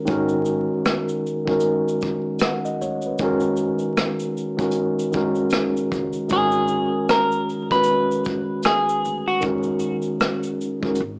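Vinyl crackle and a small-speaker, cassette-worn haze wrap this nostalgic lo-fi hip hop fragment, where a mellow, filtered tine electric piano sits up front in wet reverb and carries the swung chords. A dark brush kit with a punchy kick, rim clicks, hi-hat and shaker plays close, while a woody, thumpy pizzicato upright bass stays in the background and very quiet finger snaps flicker through. At 6.3 seconds a clean, hollow-bodied semi-hollow guitar takes a short fingered melody until 9.4 seconds, where a break closes the passage.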